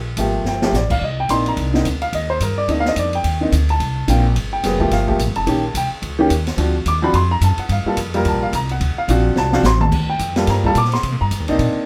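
Cool and late-night, this brief cut from a longer small-group swing and bop jazz piece moves at 216 BPM in G minor, with a woody pizzicato upright bass and an intimate baby grand piano, its action noise audible, both up front, over an open acoustic drum kit with dark cymbals, a high-tuned snare and a boomy kick, the kit playing fills at 0.5 s and from 9.4 to 9.9 s, all set in a moderate studio reverb as the harmony moves through Gm9, Cm9, Eb7 and D7#9.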